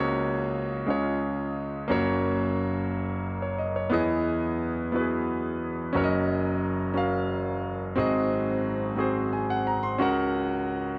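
In a straight-feeling 6/8, this jubilant, hopeful gospel passage, cut from a longer piece, features a solo concert grand piano placed up front, its clear, polished tone, deep bass and long sustain set in a moderate echo-chamber reverb as the harmony moves from F#/C# through Emaj7 and F#6 to G#7 at 8.0 seconds before returning to F#/C# at 10.0 seconds.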